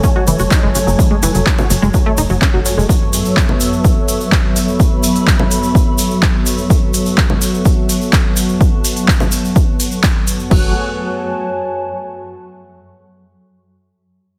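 A hypnotic, melancholic melodic techno passage opens with a lush, detuned unison pad under sidechain pumping, a very quiet swarming drone, a grainy egg shaker, a warbling, nostalgic tape-like pad, a punchy up-front electronic kick and a tight sequenced synth playing arpeggios through chorus, phaser and delay. A tight sequencer bass with tube saturation and a smooth, layered deep house kit of congas, crash, handclaps and hi-hat join at 0.3 seconds, but the bass and arpeggios drop out at 2.9 seconds, leaving the pads and drums to carry the Aadd9 harmony before both briefly return on an F#madd9 chord at 10.5 seconds. The lo-fi tape pad lingers alone to the end of the excerpt, all heard through a heavily compressed, radio-like mix with light digital reverb.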